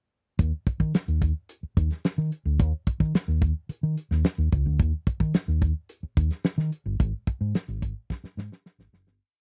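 Energetic and gritty, this short funk breakdown pairs a dark, round hollow-body electric bass, fingered and up front, playing a syncopated riff anchored on the downbeat with muted ghost notes and chromatic approach notes, with a muffled, lo-fi soul drum kit built on a fat snare, tight kick and hi-hat in a syncopated groove laced with ghost notes. The dry, close 1970s-style studio sound keeps both parts intimate, with the drums' rolled-off top adding to the vintage character. A fade-out begins at 7.0 seconds, and a drum fill carries the piece from 8.1 seconds to its close.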